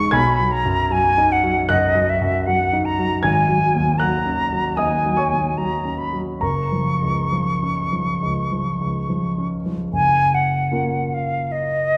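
Flute and grand piano begin together in this impressionist classical piece, cut from a longer work, set in F# major with a pastoral, luminous mood. The tempo moves freely in rubato between 66 and 80 BPM in 4/4. The concert flute carries the melody between D#5 and C#6 with an airy, bright tone, soft attacks and expressive vibrato, heard close and up front. The concert grand accompanies from deep bass up to B6, its sound dark, mellow and intimate, with a smooth, vintage character, short sustain and audible action noise. The harmony passes through B, G#9sus4 and F#maj7, and a new section arrives at 9.9 seconds before the cut at 12.0 seconds. A wet recital hall reverb surrounds both instruments and gives them a lingering, spacious glow.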